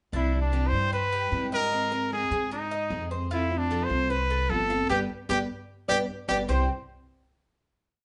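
A straight, danceable four-beat latin groove rides on a woody pizzicato upright bass playing a tumbao line that anticipates the chords, up front in the mix. A clear, punchy trumpet carries the lead with light vibrato, stating short song-like motifs in a close, pop-style solo voice. Beneath it, a Cuban tres spins an arpeggiated guajeo with a metallic bite from its doubled strings, some of them octave-paired, while a full-bodied dreadnought steel-string guitar strums with fresh-string sparkle and muted slaps. This brief, complete piece moves through a single verse to a band accent from 4.9 to 6.5 seconds, then settles on a final chord. The group sounds like it is playing live in one room, with moderate studio reverb and a soft, rounded top end.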